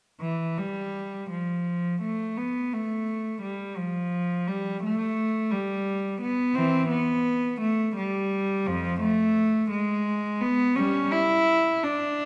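A single bowed cello, placed up front, carries this brief fragment of a baroque-style suite movement for unaccompanied cello, playing from 0.2 to 12.3 seconds. Its gut-string tone sounds reedy with a smooth top, and the player adds a light vibrato in a period style. The mood is radiant and dance-like, moving at about 57 beats per minute in 6/8 with a free, rubato feel. The line ranges from F2 up to E4, and the warm voice of the cello fills a wet recital hall whose reverb lingers for about 1.6 seconds, giving the classical performance a resonant sound.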